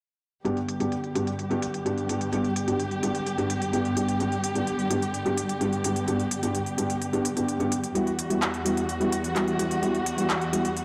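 Festival progressive house with an uplifting, triumphant mood, this short section cut from a longer piece sets a felt-muted upright piano, soft and boxy with audible action noise and a dub echo, against a dark studio string section playing sustained, expressive chords with vibrato and portamento. Underneath, a layered big-room dance drum kit of handclaps and crisp, overdriven hi-hats sits low in the mix, filtered and carrying a filter sweep from 0.5 to 10.8 seconds. A lush hall reverb and dark, warm production wrap the up-front piano and the close, up-front strings as the harmony moves from G to Emadd9 at 8.0 seconds.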